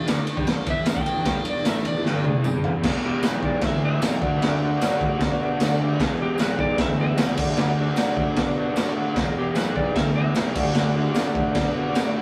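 A raw, gritty drum kit sits up front in a small, pumping room, its boomy kick and medium-tuned snare saturated and rolled-off on top, driving this swaggering, rowdy garage rock cut from a longer piece. A double-tracked, crunchy guitar picks out a dark, overdriven riff with tremolo, while a fuzz-soaked fingered bass adds a bright, growly low end. A clean lap steel played with fingerpicks and slide carries the melody with a dark tone, shaped by volume swells, and falls away at 11.3 seconds. A jingly, compressed tambourine sits in the background behind crash, ride and toms. After a drum fill starting at 2.1 seconds, the band settles at 2.8 seconds into a rough rehearsal-room vamp that rocks between E and D under light reverb.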